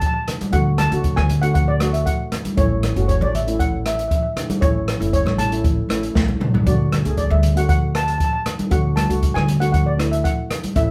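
Bouncy and sunny, this short calypso clip at 117 BPM pairs a shimmering lead steel pan, played with soft rubber sticks, with a mellow double seconds pan accompaniment, a woody pizzicato upright bass, a dark, smooth jazz kit with a punchy kick up front and a brief drum fill at 6.2 seconds, and ringing congas in the background, all moving between D and A as the band plays live in one room with wet studio reverb.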